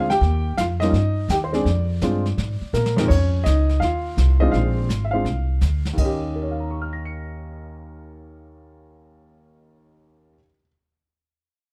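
A dark production with light reverb frames this short cut from a longer jazz piano trio piece, relaxed and warm in mood with a swinging 4/4 feel. An up-front baby grand carries the melody over a woody, growly pizzicato upright bass through changes such as Bb7 and F7(no3), while an airy small-room brush kit with a boomy kick and dark cymbals adds a fill at 2.7 s and stops at 6.3 s. Piano and bass carry on together, the bass dropping out just before the piano finishes.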